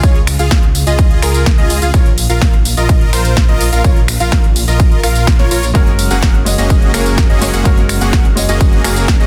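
Festival progressive house with an uplifting, anthemic mood, this short excerpt is driven by a punchy, up-front electronic kick and a big-room kit of crisp hats, snare, snaps, tambourine and ride, with soft clipping on the snare and a tape-tinged large-room character. Huge, lush supersaw chords carry the riff over a thick, menacing detuned saw bass with tube saturation, while a dark baby grand plays arpeggios in the background, the supersaws and pianos pumping with sidechain and trailing dub echo through a Db, Bbm, Gbadd9 progression. At 5.7 seconds a soft, felt-muted upright piano with audible action noise joins as intimate accompaniment, all within a dense, heavily limited modern master.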